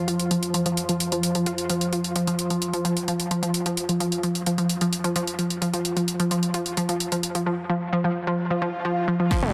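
Driving peak-time techno with a dark mood opens on a bright, detuned analog pluck riff with chorus, sidechain pumping and dub echo, over a deep, moody ambient pad drone whose slow attack, chorus and built-in reverb give it a mellow haze until 7.5 seconds, while a filter sweep runs across the synth arpeggio throughout. A tape-toned, up-front techno drum kit of crash, ride and warm hats carries the groove in a lush hall, and an electronic swell rises from 8.6 seconds. At 9.3 seconds a heavy layered kick lands, and at 9.4 seconds a gritty, aggressive, distorted sawtooth bass bites in, all within a dense, heavily limited modern master.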